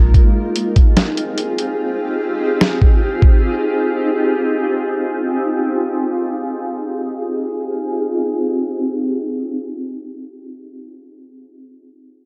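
In free time, this hazy, spacious hip hop excerpt in atmospheric cloud-rap style, set in F minor, opens with a blurred, granular cloud pad with a slow attack, sidechain pumping, a low-pass filter and its own reverb, which sustains an Fm9 chord until 10.8 s. A moment later it is joined by a muffled, pitched-down lo-fi sampler-style drum kit of thumpy kick, medium-tuned snare and hi-hat, overdriven, compressed and up front, which stops at 3.3 s. All of this sits inside a dark production with light reverb.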